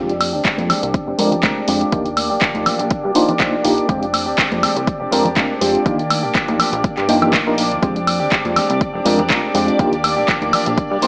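A punchy analog drum machine with tape-warm handclaps, hi-hat and woodblock drives this filtered disco house groove at 122 BPM in 4/4, with a light 16th-note swing, joined at 0.4 seconds by an overdriven, layered electronic kick up front and, further back, a close, dry egg shaker and ringing congas. Set in F dorian and tuned to A4 = 444 Hz, the cut alternates Fm69 and Ebmaj9 every couple of seconds, giving it a sensual, funky mood. A reedy electric piano with fast tremolo and phaser carries the accompaniment, while a bright, clean, direct-recorded electric guitar plays a compressed, picked riff roughened by vintage 12-bit sampler grit. Underneath, a plucky analog bass with sawtooth, pulse and triangle tones, ring modulation and a fast-attack, decaying filter pluck holds the low end, and a lush vintage string machine with a sub octave and ensemble chorus sustains chords in the background. 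Sidechain pumping breathes through the melodic parts and the drum machine's hats and percussion, and a filter sweep across this whole excerpt shades the low-passed parts, all in a light reverb with a small-speaker sound.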